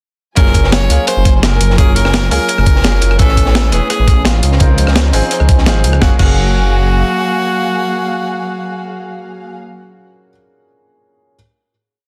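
A dense, heavily limited modern mix with light reverb and a small room ambience frames this short, complete liquid drum and bass piece at 170 BPM in Gb major, warm and uplifting in mood. An edgy tenor saxophone with light vibrato carries a punchy, motif-based melody of call phrases through delay, while a bright grand piano, brilliant and open, plays rootless held chords with syncopated pushes through tape echo. Underneath, a dark studio string section lays down a lush, woody pad of sustained bowed chords with sidechain pumping, and an up-front detuned saw bass rumbles deep in a dotted rhythm. The drop, from 0.4 to 6.0 seconds, is driven by a gritty, thumpy electronic kick, a tape-warm sampler-style breakbeat kit rolling a two-step pattern of rims, hats, snare and crash, and a crunchy, saturated breakbeat loop with edits sitting in the background behind high-pass filtering. The chords move from Gbmaj9 through Amaj9 and Dbmaj9 back to Gbmaj9 for a final chord, with the piano continuing alone until 11.4 seconds.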